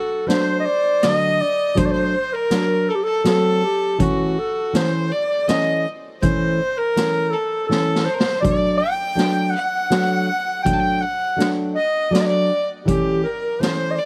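Dry and intimate, this short klezmer excerpt in a straight three-time has a soulful, bittersweet cast, with a dark, breathy clarinet carrying the melody up front in a whispered, intimate jazz style with scooped notes and vibrato. A single bowed violin with a biting, intense tone adds a second line above a thumb-plucked classical nylon-string guitar accompaniment. A boomy street-band drum kit with a rolled-off top keeps time on hi-hat, kick and snare, breaking into a fill at 7.7 seconds as the chords move between D and A.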